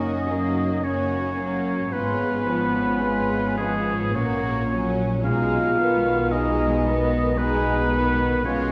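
An up-front solo oboe with light vibrato and a punchy, smooth-topped tone plays a second line in this lyrical classical excerpt, which moves at a rubato 56 BPM in 3/4. Behind it, a symphonic violin section carries the melody in a pure, floating sul tasto sound while an intimate chamber violin section adds a second line of its own. Woody, lush violas supply the accompaniment, a French horn section holds sustained chords in the background, and a dark double bass section and a soft-attack cello section share the bass. A very quiet, bright concert harp rings out fingerpicked arpeggios, and the ensemble is heard from further back in a reverberant concert hall as the chords move from F# through C#7/G# and F#/A# to G#m/B.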